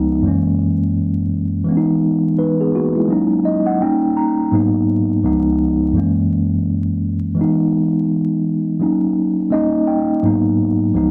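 The rhythm sits on a relaxed 84 BPM in 4/4, with a 60% swing on the sixteenths giving this hazy, reflective hip hop fragment its loose, unhurried lean. A mellow tine electric piano plays alone for the full 11.1 seconds, ranging from C#2 up to A#5, in G# minor with tuning set to A4 = 439 Hz. Its clean tone sounds as if played through built-in speakers, sitting up front and passed through cassette tape coloring and a low-pass filter. The harmony moves from F#7 at 0.2 seconds through Emaj9#11, D#m7, D#7, G#m7 and C#7, then returns to F#7 at 6.0 seconds, with the second pass landing on Emaj7 before closing on G#m7. A moderate small-room reverb and vinyl crackle frame the dark, warm production, reinforcing the hazy, reflective mood of this passage cut from a longer piece.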